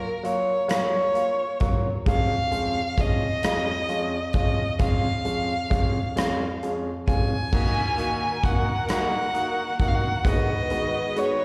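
Tender and heartfelt, this excerpt from a six-eight pop ballad, heard live through a venue's PA with recital hall reverb, sets a rich, vibrato-laden solo violin melody with slapback and tape echo over an intimate concert grand piano with audible action noise and long sustain, while a huge arena drum kit with a punchy kick, crash, hi-hat and rim click sits up front and a lush studio string section enters in the background at 7.5 seconds as the chords move from F#maj7 to D#m.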